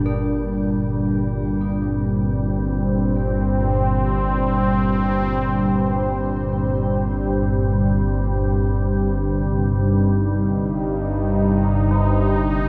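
Unsettling and dark, this dark ambient drone in G minor drifts in free time, with a detuned, sine-toned organ-like drone rumbling low and up front under a sweeping, airy sawtooth pad whose bright, evolving sustained chords shimmer through chorus and shimmer reverb. Deep in the background, a gamelan-type bronze metallophone rings out smooth, metallic arpeggios through tape echo, fading in across the whole 12.7 seconds. The echo-heavy mix sits in a moderate plate reverb, and the harmony shifts from Gm to Cm/G at 8.4 seconds in this fragment cut from a longer piece.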